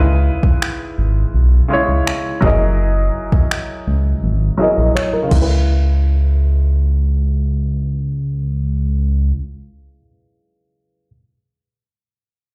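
A bright baby grand piano, softened by a low-pass filter, opens this sensual, late-night contemporary R&B excerpt alongside a dark sawtooth synth bass that glides between notes, both up front, as a filter sweep runs through the first 5.7 seconds over C#m7 and F#13 chords. An overdriven electronic kit of soft kick, finger snaps and crash cymbal enters at 0.4 seconds, its kick dropping out before the kit stops at 5.5 seconds, and a small fingerpicked nylon-string guitar with finger squeak and digital delay flickers briefly in the background. The music sits in a large studio reverb, as if played on a big sound system in a bare room.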